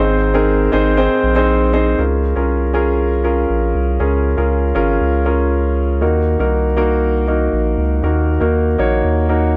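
Light reverb surrounds this short recording, with both parts placed up front. It is a piece of anthemic, hopeful piano-driven pop in Db major, moving at 119 BPM in a straight 4/4. A clear, present, polished baby grand piano carries the accompaniment from start to finish, ringing with long sustain across a span from Ab2 to Eb5. Underneath, a round analog bass with a deep, dark, sine-like tone holds the low end between Ab1 and Eb2, its fast attack and sustained notes shaped by a filter sweep. The harmony opens on Ab, shifts to Db6 as a new section begins at 2.0 seconds, and reaches Ebm at 6.0 seconds before this cut from a longer piece ends at 9.6 seconds.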